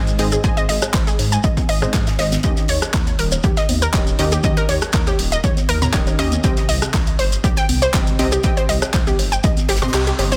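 A punchy, overdriven electronic kick sits up front in this hopeful, expansive progressive house excerpt, dropping out at 9.9 seconds as the band hits an accent. A dark, rumbling detuned saw bass with tube saturation and a lush unison pluck playing stabs both pump against the sidechain, while a round analog pluck spins chorused, dub-echoed arpeggios over chords moving from Ab to Eb7 to Cm. A tape-warm deep house kit with handclaps, hi-hat and rim click, electronic bongos, congas and toms in the background, a grainy shekere and a very quiet, dry 70s kit with a fat snare fill out the groove, all in light reverb under a dense, heavily limited master.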